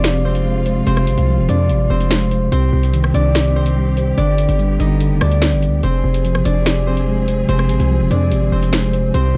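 A half-time drill hip hop groove of finger snaps, metallic hi-hats, rim clicks and a sharp snare sets a menacing, cold mood as a punchy, heavy 808-style bass sits up front beneath a fingerpicked, ringing concert harp melody softened by a low-pass filter and digital delay, a mellow, clean tine electric piano, also filtered, and a lush, bowed string section with vibrato tucked in the background, all in a dark, dry production.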